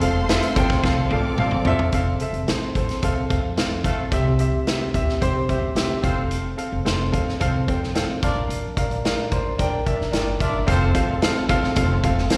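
A straight 4/4 groove at 110 BPM drives this joyful, danceable slice of uptempo 1960s-style soul in F major, with a vintage drum kit up front delivering a punchy kick and a woody, thumpy pizzicato upright bass holding the low end while a clear concert grand piano provides accompaniment throughout. A lush bowed violin section and a lightly overdriven tonewheel organ with key click open the passage until a drum fill ends at 1.9 seconds, after which a distant horn section with octave doubling carries a second line from 3.0 seconds, and the very quiet organ returns at 10.7 seconds. Slapback echo touches the piano, violins and horns, and the performance sounds like a live gig heard through a venue's PA with recital-hall reverb.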